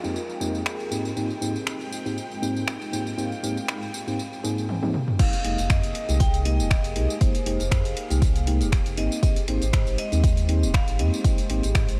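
A moody, deep house piece at 119 BPM in F minor opens with a dark analog pad, a soft, warbling FM electric piano playing stabs through chorus and delay, a drum kit of snaps, hi-hat, ride, tambourine, toms and crash with overdrive, a very quiet downlifter and a blurred granular cloud pad, while a distant, biting violin section joins at 1.2 s. A drum fill then leads into the drop at 5.2 s, where an up-front electronic kick, a full sine sub bass with octave and a bright, metallic vibraphone melody on hard mallets arrive over light digital ambience.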